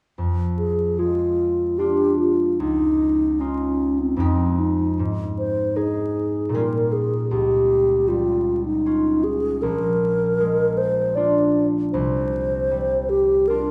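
A pure, hollow-toned alto flute carries the melody from 0.6 s, its tongued notes colored with vibrato, in this wistful, hazy impressionist classical excerpt in a rubato 3/4. A warm, fingerpicked concert harp begins at 0.2 s and accompanies with ringing acoustic chords drifting through shades such as Fm6, Dbadd9 and Bb7 before settling on a suspended close, with both instruments sitting close to the listener. A wet recital-hall reverb and a bed of vinyl crackle lend the short passage a faded, dreamlike glow.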